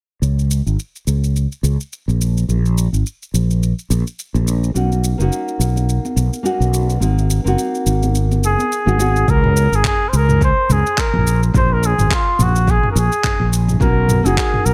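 Sunset chillout with a blissful, smooth swing, this excerpt rides on a growly, punchy fretless electric bass with lush chorus up front and an overdriven deep house drum kit of handclaps, shaker and toms, set in a light, echo-heavy mix. A dark, woody nylon-string guitar with tape echo joins at 4.7 seconds, and ringing congas with analog delay follow at 5.8 seconds in the background. A clear, vintage flugelhorn with light vibrato takes the solo melody from 8.5 seconds, and a deep, overdriven electronic kick drum enters at 9.3 seconds.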